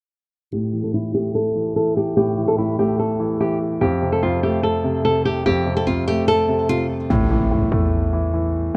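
A rough home demo mix with light reverb and small room ambience carries this dark, cold half-time hip hop excerpt at 146 BPM in A minor. Up front, a bright, fingerpicked nylon-string guitar melody with audible finger squeak sits over a mellow concert grand piano with deep bass, both heard through a low-pass filter sweep as the chords move from A5 to F. At 7.1 seconds an electronic impact strikes and a punchy, heavy 808-style bass enters with a fast attack and a decaying sine tone layered with noise, running to 8.8 seconds.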